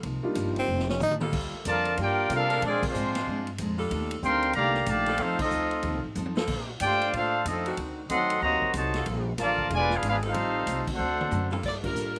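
A clear trumpet section carries the melody from 1.7 seconds over a warm trombone section's second line and an edgy saxophone section's sustained chords in this sultry, swinging big-band jazz excerpt. It opens with a brief tenor saxophone solo, close-miked with scooped notes and slapback echo, and a touch of intimate baby grand piano. Picked steel-string acoustic guitar sits in the background while a woody upright bass and a drum kit with a punchy kick and fills run throughout, and a bright saxophone section takes the melody at 11.7 seconds.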